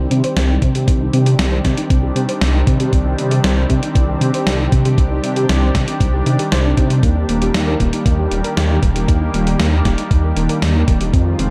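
A dark, warm production with light reverb opens this short synthwave passage, cut from a longer piece, in C minor at 117 BPM in a straight 4/4. The mood is nostalgic and driving, resting on a Cmadd9 chord before shifting to Ebmaj7 at 7.0 seconds. Up front, a thick detuned saw bass with chorus carries the low end, while a lush unison pad holds sustained chords with a slow attack, bright edge and sidechain pumping. In the background, a soft, round pluck spins arpeggios through chorus and tape echo. A gated 80s digital drum machine supplies hi-hat and a gated-reverb snare from 0.1 seconds, and a thumpy electronic kick joins at 0.6 seconds, both sampler-style and re-recorded in a small room.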